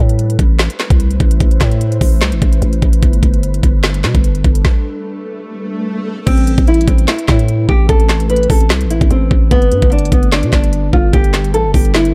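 Trap hip hop in A minor at 148 BPM with a half-time feel, this menacing, eerie cut opens on an ethereal, airy pad of detuned sawtooth chords with ensemble chorus sitting in the background over a growling, buzzy 808-style bass and an up-front trap kit with knocking kick, woody snare, crisp hats, handclaps and crash, then after a stop from 4.6 s and an electronic swell, a small, dark fingerpicked nylon-string guitar takes the melody at 6.3 s over Amadd9 and Gadd9 chords in a dark, dry production.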